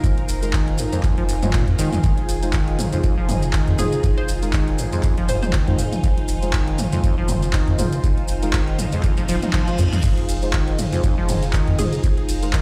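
Acid house with a hypnotic, trippy mood, this short cut from a longer piece rides a swung 4/4 groove over a single F minor seventh chord. A rubbery, resonant acid bass riff with sawtooth bite and filter sweeps sits on top of a round sine sub bass that breathes with sidechain pumping alongside the dry, deep electronic kick, while an analog drum machine adds metallic hi-hats, handclaps, ride, crash and toms, with grainy maracas tucked close in the background. Lush vintage string-machine chords, treated with phaser and ensemble chorus, breathe with sidechain pumping, and soft, wave-folded chord stabs drift behind them through chorus, phaser and digital delay. A warbling, nostalgic tape-like pad with ring modulation and built-in reverb hovers dimly underneath, giving the track a lo-fi haze. A hollow, bouncy square-wave pluck flickers through dub echo around 3.8 seconds and again briefly near the end, and a reverse cymbal rises in the background at 9.2 seconds, all set in a stone-room ambience as if played on a big sound system in a bare space.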